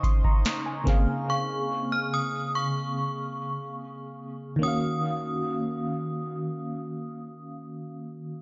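The recording sounds dark and echo-heavy, its top end rolled off and set in light reverb with a digital ambience. This short cut from a longer contemporary R&B piece moves at a slow, straight 72 BPM in 4/4 in Eb dorian, with a longing, sensual mood. An up-front FM electric piano carries the accompaniment throughout, its fast-attack, decaying tones shimmering with tremolo, phaser and dub echo over a faint noise layer. At the start, a booming analog drum machine with a deep kick, crisp snare and metallic hats, re-recorded in a large room, plays briefly alongside a glassy, ethereal FM pad that pumps softly in the background and drops out by 1.3 seconds. From that point a chiming, inharmonic synth melody rings high above with a long release, thickened by ensemble chorus and dub echo. The harmony rests on Dbmaj7 before moving to Ebm7 at 4.6 seconds.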